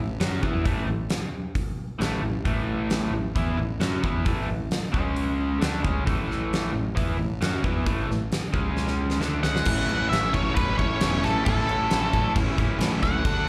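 Confident and sunny, this classic rock cut opens with a bright, crunchy overdriven guitar riff, double-tracked and up front with a slapback echo, over a fuzzy fingered electric bass and a huge arena drum kit with a fat snare and punchy kick. A drum fill at 8.8 seconds leads into a new section at 9.7 seconds, where a dark octave-fuzz lead guitar, entering at 9.4 seconds, carries the melody with distortion and its own slapback echo. It sounds like a live gig heard through the venue's PA, with light club reverb, and it is cut from a longer piece.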